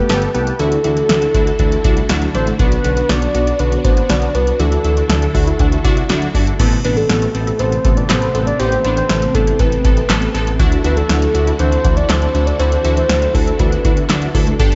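An up-front electro analog drum machine drives this melancholic, nocturnal synth-pop excerpt at 120 BPM in a straight 4/4. Its deep kick, punchy snare, handclaps, metallic hi-hats and crash cymbal carry the spacious air of a large room, with a short room sound on the snare, claps and hats. Beneath it, a smooth, mellow synth bass glides between notes with portamento, sitting prominently in the mix. A soft, octave-layered lead, round and dark with a sub-octave and gentle vibrato, sings the melody through chorus, phaser and tape echo until 14.1 seconds. A funky polysynth comp built from detuned sawtooth and pulse waves adds punchy chords with a moving notch filter sweep. Meanwhile a very quiet, lush unison pluck traces arpeggios, and a vintage, warbling string-machine viola pad holds sustained chords in the background. The harmony moves through Gadd9, Dadd9 and Bm before shifting to Amadd9 at 6.6 seconds, all tuned slightly flat to A4 = 436 Hz and framed by light reverb and a soft, rolled-off top end.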